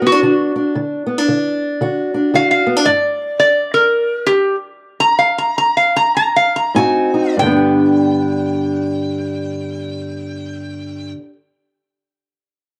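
Swaggering and gritty, this acoustic country blues fragment from a longer piece swings and slows down between 2.8 and 7.4 seconds. A bright, nasal metal-body resonator slide guitar carries the melody up front from the start until 11.1 seconds, played with fingerpicks for a metallic bite. Beneath it, a dark, boxy parlour-style steel-string acoustic guitar fingerpicks the accompaniment, dropping out at 3.3 seconds and returning at 6.7, while both guitars carry a cassette tape character in a home recording with light studio reverb.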